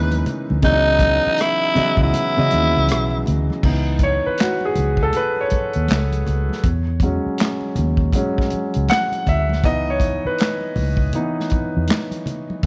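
Smooth and introspective, this neo-soul R&B excerpt opens with a raspy, breathy tenor saxophone carrying the melody with vibrato and a slapback echo, until it drops out at 3.2 seconds. A round, foam-muted fingered electric bass with vintage saturation and a softly rolled-off acoustic soul kit (tight kick, dark cymbals, rim clicks and handclaps) sit under lush minor ninth and eleventh chords, with faint, damped, low-tuned congas beneath. From 3.6 seconds the up-front baby grand piano takes a solo with a long, natural sustain, all within a small, lightly reverberant room.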